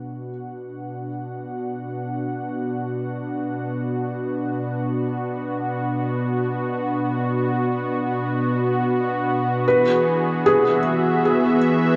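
Ambient and serene, this free-time passage cut from a longer piece fades in on a smooth, detuned sawtooth pad with chorus, holding sustained chords up front from Bm before moving to Eadd9 at 9.7 seconds, where a felt-muted upright piano enters with soft, intimate arpeggios carrying audible action noise and delay; at 10.6 seconds a nasal, evolving analog drone with pulse-width modulation and chorus settles into the background, the spacious scene set in a lush hall reverb with a dark, warm production.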